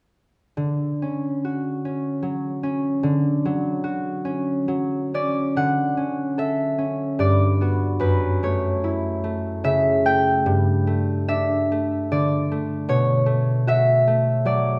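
A concert harp begins alone at 0.6 seconds, fingerpicked and ringing up front in a peaceful, graceful classical solo in 3/4 with a rubato feel. Its warm, acoustic tone spans from low F#2 to G5, moving through rich chords such as Dmaj7, Gmaj9 and Bm9 before the passage breaks off at 14.8 seconds. A wet recital hall reverb lets each note bloom into the surrounding space.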